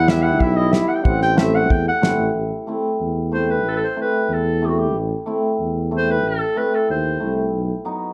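A roomy, distant clarinet with light vibrato carries the melody in this bittersweet, soulful klezmer excerpt at 92 BPM in 2/4, taking a jazz-tinged solo over the opening 2.3 seconds. A trombone with scooped notes sits in the background and a dry drum kit with a fat snare and tight kick sits up front, and both are gone by 2.2 seconds. Underneath, a mellow, smooth-topped tuba holds the bass and a shimmering, hammered cimbalom rings up front through Em and Am before touching B near the end, all in A dorian with a raised fourth and set in a dark, warm production with moderate studio reverb.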